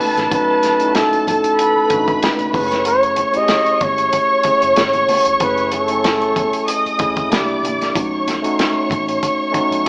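A lightly swung 94 BPM groove from a muffled, gritty soul drum kit with tight kick and hi-hat, very quiet bright congas and a dark, round, foam-muted electric bass in the background carries this bittersweet, cinematic fragment of lush 1970s-style soul in F# dorian. Up front, a breathy, mellow flugelhorn sings the melody with vibrato and a soft attack until 7.0 s, beside a smooth, bowed studio violin section playing a second line, while a clean tine electric piano comps through its built-in speakers over chords moving from B7 to F#m7 and C9. The band sounds live in one room, bathed in a large, wet studio reverb yet heard through a small speaker.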